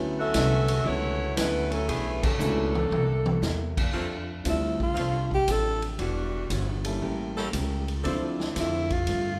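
Swinging and joyful, this big band swing excerpt at 117 BPM opens with a mellow, tight saxophone section carrying the melody over woody pizzicato upright bass, natural grand piano and a clean, picked hollow-body electric guitar tucked in the background. The band hits an accent at 2.1 seconds, and a roomy, distant drum kit with dark cymbals and a boomy kick plays a fill just after. At 3.9 seconds the music moves into F major as a bright, close-miked saxophone section holds sustained chords, and from 4.5 seconds a clear alto saxophone solos with vibrato, all heard through a moderate recital-hall reverb.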